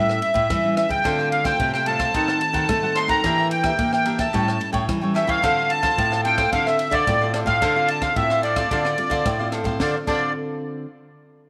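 A reedy, sweet accordion with a light tremolo tuning carries the melody up front in this bittersweet yet lively blend of samba and choro, cut from a longer piece. Beneath it, a bright, fingerpicked classical nylon-string guitar supplies accompaniment with audible finger squeak, while a second, full-bodied nylon-string guitar with a deep classical tone plays the bass line. A crisp, picked cavaquinho joins at 1.0 seconds, adding another layer of accompaniment. An open jazz drum kit, recorded in a studio room, mixes dark cymbals, a high-tuned snare with rim clicks, and a boomy kick. The harmony moves through A7, Dm7, D#dim7 and Em7b5 before returning to A7 and Dm7, and the passage shifts into a new section at 9.8 seconds, all set in a small room with light reverb.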